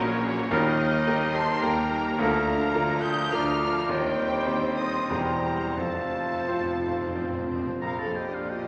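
In a flexible, rubato triple metre, this lyrical and passionate romantic movement for piano and orchestra is cut from a longer piece. A brilliant, up-front concert grand with deep bass carries the melody alongside a lush, distant symphonic violin section with intense vibrato, while a clear oboe, a pure, hollow silver flute, and a very quiet chamber violin section with expressive portamento weave second lines over soft violas, and a mellow tuba, smooth cellos and double basses hold the bass. From 0.5 s, a French horn section and a vintage-toned trombone section sustain chords under trumpet stabs, and round, dry timpani with soft mallets add a fill from 5.8 s before the phrase settles on Bb at 7.8 s, all bathed in a wet scoring-stage reverb.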